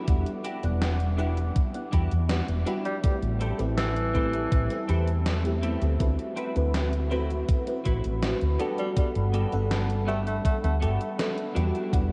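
A straight 4/4 pulse at 81 BPM from a thumpy, up-front electronic kick and a gated 80s digital drum machine's cabasa, hi-hat and gated-reverb snare carries this dreamy, woozy vaporwave excerpt in G major, where a round, dark fretless bass sits forward, a lush FM electric piano with a soft pad layer shimmers through phaser and delay, a clean, compressed electric guitar riff rides chorus and analog delay, a warbly, lo-fi tape-like pad hovers in the background, and from 2.9 s to 10.8 s a vintage tenor saxophone with vibrato sings a low jazz melody through tape echo, all moving over Em9, Am7, D13 and Gmaj9 in a hazy, cassette-tinged mix drenched in long cathedral reverb.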